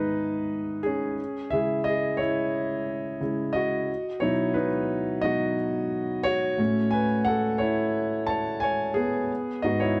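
In a straight 4/4 at 89 BPM, this earnest, bittersweet pop fragment in C# minor features a solo concert grand piano playing alone for its full 10 seconds, ranging from G#2 to A5. The chords move from G#m through C#m, B and F#m/A before returning to G#m at 9.3 seconds. The piano sits up front with an intimate, vintage character, deep bass, smooth tone and audible action noise, framed by light reverb in a dark, warm production.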